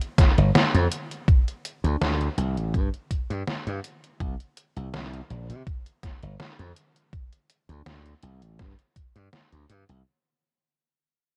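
Woozy and hazy, this short vaporwave excerpt pairs a detuned 8-bit drum machine's up-front hi-hat and medium-tuned snare with a thumpy, sampler-style electronic kick that drops out at 9.1 seconds, while a bright, punchy slap bass with tube saturation rides beneath a light swing, all heard dry through a cassette-tape sheen as the whole recording fades out.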